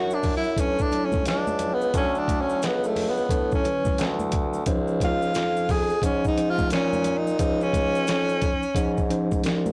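A blown-out, overdriven sound with a light touch of reverb colors this short cut from a longer jazz-hop piece, a relaxed, warm hip hop groove with a swung sixteenth-note feel. Up front, a breathy tenor saxophone carries the melody as a solo from the very start. It is close-miked and intimate, and its soft attack and vibrato give it a whispered, jazz-style voice until it stops at 9.3 seconds. A clean tine electric piano, heard as if through its built-in speakers, plays accompaniment beneath it, while a mellow bassoon with light vibrato holds down the bass in a vintage, classical style. The boom bap sampler-style kit enters at 0.2 seconds, gritty, compressed and pitched down, with a thumpy kick, a medium-tuned snare with soft clipping, and hi-hat, its tape-warm sound sitting up front. Maracas and congas ring in the background, close and dry, as the harmony moves from Dmaj9 to C#maj9.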